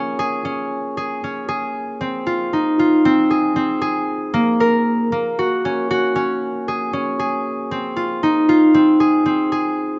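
A warm, ringing concert harp plays alone and up front, fingerpicked in Bb minor across a compact middle range, giving this short contemporary instrumental excerpt a restless, pensive cast in an uneven 11/8 at 231 BPM, moving from Bbm7 to Fm7 and back with light reverb and a soft, dulled top end.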